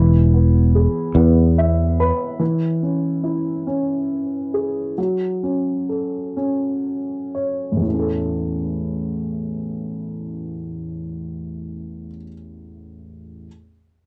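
A dark, woody upright piano and a growly, punchy fretless electric bass open this tender, heartfelt acoustic folk-pop ballad in a straight 6/8, both sitting up front, though the bass drops away at 2.1 seconds. The piano carries on alone with a cassette-tape tint, slowing between 2.4 and 7.8 seconds as the harmony moves through minor chords before settling onto a new passage. Light reverb and the intimate character of a home cassette recording give this short excerpt, cut from a longer piece, a close, personal feel.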